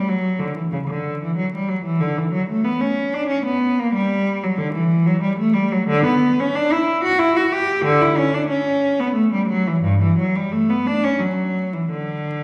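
A lone bowed cello opens this solemn, grave fragment of a baroque-style suite movement, cut from a longer piece and running 12.4 seconds. The player moves in a rubato 3/4 at roughly 84-96 BPM, ranging from G2 up to G4, with the tonality settling into D major from 5.9 s. The instrument's tone is rich and focused, with a smooth top and vibrato, tuned slightly high to A4 = 443 Hz. A wet recital hall reverb with a 1.8-second decay surrounds the instrument, and the listener seems placed further back in the room. A layer of vinyl crackle sits beneath the cello, lending the recording a worn, old-record quality.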